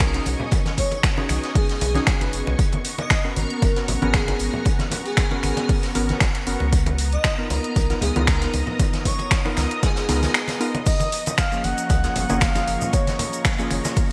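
A punchy electronic kick sits up front in this sunny deep house excerpt at 116 BPM in F# major with a light swing, backed by an overdriven deep house kit of crash, finger snaps and hi-hat, a gritty, rolled-off garage kit with pumping hats, and damped, low-tuned congas in the background. A round sine sub bass and mellow, detuned analog key stabs with chorus and delay sit alongside silky string-machine chords that pump under the kick, while an airy, dreamy lead with vibrato and portamento carries the melody until 10.7 s. At 10.9 s a breathy, flute-like synth lead and a grainy tube shaker enter as the chords arrive on F#maj7, framed by small-room ambience, bright 1980s-style digital production and vinyl crackle.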